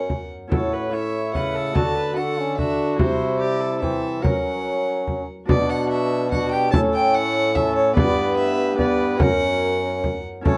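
A solemn, courtly renaissance-style consort dance in triple time opens with a gut-string violin carrying the melody with light vibrato over a distant, reedy viola second line, a ringing fingerpicked Celtic harp, a bright trombone and a mellow, roomy bassoon bass, while a soft-handed frame drum joins close and dry at 0.1 seconds. Cut from a longer piece, the passage states its phrase twice: first through F#, A, D and C, then again from 5.5 seconds through Bm, A and G, returning to F#. The dark production sits in a moderate studio reverb, with the drum kept up front.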